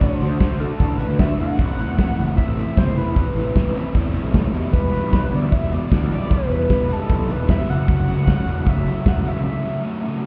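Bittersweet and moody, this indie rock excerpt drives along at 153 BPM in E minor, with a loose, acoustic drum kit with a tight kick and a rolled-off top and a growly, fuzz-drenched picked bass sitting up front beneath a double-tracked fuzz guitar riff, moving through D7, Amadd9, Em7 and F#m7. Over them a gritty, screaming synth lead with a guitar-like sawtooth bite carries the melody, colored by distortion, chorus, phaser, vibrato and slapback echo. The whole mix sounds muffled as if heard through a wall in a stone room. The drums drop out at 9.3 seconds and the bass at 9.4 seconds for a brief break, while the synth lead carries on to 10.1 seconds and the guitar to 10.3 seconds.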